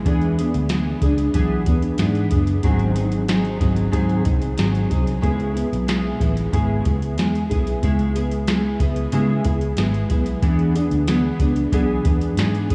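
Hazy and sunny, this short bedroom-pop fragment at 92 BPM in 4/4 sets an up-front, full-bodied fingerpicked nylon-string guitar, with analog chorus, vibrato and audible finger squeak, over a round, foam-muted vintage electric bass and a soft overdriven rhythm box of deep kick, crisp snare and metallic hats, all drifting through an E7, G#7 and C#m7 progression in a dreamy mix soaked in cathedral reverb.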